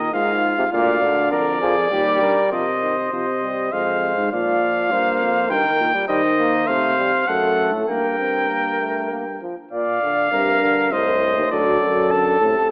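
A bright trumpet leads this classical brass canzona, carrying the melody up front with a light vibrato. Beneath it, a mellow flugelhorn sings the second line from a more distant, roomy spot, also with a light vibrato, while a close-miked trombone supplies the accompaniment and a warm tuba anchors the bass from farther back. The ensemble moves at 100 BPM in a steady 3/4 with a straight feel, with a mood that is both contemplative and driving. The harmony begins in Eb major and turns toward G minor from 6.1 seconds, closing on a D chord, and the tuba drops out at 12.5 seconds, just before the others finish. The whole fragment, cut from a longer piece, sits in a wet scoring-stage reverb and has a narrow, boxy AM radio character.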